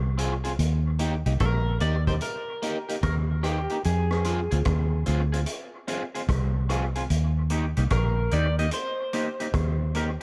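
Sunny and uplifting, this roots reggae excerpt sits at a relaxed 74 BPM in Eb major with a swung sixteenth feel, moving between Fm and Eb over a dark, small-room production. A round, foam-muted fingered bass sits up front from the first moment, joined at 0.2 seconds by a punchy-kicked vintage kit of hi-hat, kick and rim click with a rolled-off top and dub echo, plus a picked, slightly broken-up guitar accompaniment treated with phaser and dub echo. At 1.4 seconds a twangy fingered lead guitar enters with the melody, coloured by subtle chorus and its own dub echo.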